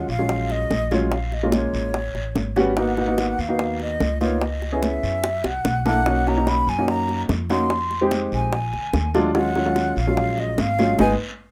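Afro-Cuban jazz at 146 BPM in Eb minor, fiery and sultry and cut from a longer piece, where a breathy metal flute with vibrato, a soft attack and an unsteady tone carries the melody over up-front, woody upright piano chords and a pizzicato upright bass on steel strings, while tight, hard-handed bongos, very quiet damped congas and a raspy, band-limited guiro fill out the percussion, a drum fill arrives at 5.2 seconds and a band accent lands at 11.0 seconds, all in a rough home-demo mix with small-room ambience.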